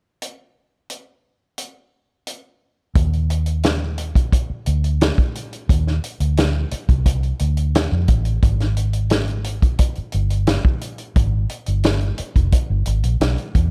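The sound is dry and close, with little reverb, and both parts sit up front in the mix. This is lush, romantic 1970s-style soul at 88 BPM in a straight 4/4, tuned to A4 = 442 Hz. A vintage drum kit opens at 0.2 seconds on its own, playing hi-hat, kick and snare, with a natural studio-room character, a medium-tuned snare, a tight kick and a warm, rolled-off top. At 3.0 seconds a vintage muted fingered electric bass joins, ranging from F1 to F2 with a dark, round, punchy amplified tone shaped by foam muting. Drums and bass then carry the groove together until the clip ends at 13.7 seconds, cut from a longer piece.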